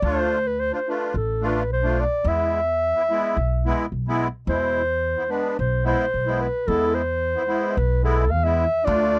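Klezmer at 109 BPM in E phrygian dominant, festive yet bittersweet, this short cut from a longer piece moves between Dm and E over a straight 4/4 feel. A mellow, classical-style clarinet carries the solo melody up front, while a reedy, shimmering musette accordion fills out the accompaniment and a woody, thumpy pizzicato upright bass on gut strings anchors the low end. The sound is dry and close, like a 1970s studio session with light reverb, and the same phrase repeats from 4.5 seconds.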